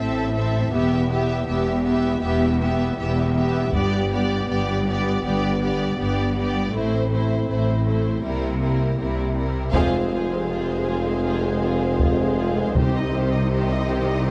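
A heroic, relentless cinematic orchestral cue at 80 BPM opens in A minor with a lush, expressive violin melody over a smooth second violin line, viola accompaniment, background French horn chords and a focused bowed bass of rich cellos and double basses, while a compressed, saturated taiko ensemble strikes at 3.7 seconds before the music shifts to F minor at 9.7 seconds with a band accent, bright trombones, sustained strings, a clear vintage tuba and very quiet, dry timpani, all in a light reverb.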